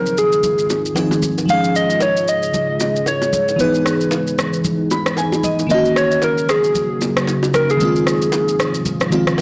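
Soulful and relaxed, this amapiano excerpt rides a swung groove of electronic shaker and rim click, with soft clipping on the snare, and warm acoustic congas and bongos entering at 0.4 seconds. A round, gentle struck synth lead carries the melody up front with chorus and tape echo, while a crystalline, sparkling FM electric piano adds phased accompaniment and a fill from 4.6 to 5.7 seconds. Beneath them a deep, dark, warbling ambient pad sustains the chords, all set in a moderate digital room reverb on a blown-out, overdriven recording.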